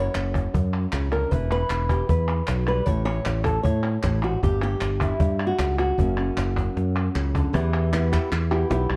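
A fingerpicked flamenco guitar leads this passionate, dramatic flamenco fragment, sitting up front with an acoustic tone and audible finger squeak as it carries the melody across a range spanning F#2 to C#5. Beneath it, a bright, growly fingered electric bass plays direct and forward, anchoring the low end. A snappy cajon, played close with soft hands and a buzz of snares, drives the straight 4/4 pulse at 154 BPM, with a fill from 6.8 to 7.5 seconds. Crisp, vintage-sounding palmas hand claps sit further back in the mix with a band-limited edge. The harmony moves from F#5 through Em, A, Em69/G and F#, turning to a new passage on Em at 7.5 seconds, all within a dark, warm production with light reverb.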